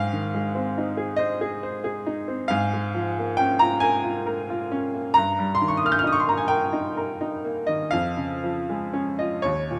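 Dreamy and nostalgic, this short cut from a romantic classical nocturne features a clear, woody upright piano with a vintage character and short sustain, heard up front through close, detailed microphones with light reverb, playing alone in Ab major in a rubato 6/8 at 39-47 BPM (dotted quarters), tuned to A4 = 436 Hz, spanning Eb2 to G6 as it moves from Ab through Bbm7/Ab and Eb/G to Db/F over 9.8 seconds.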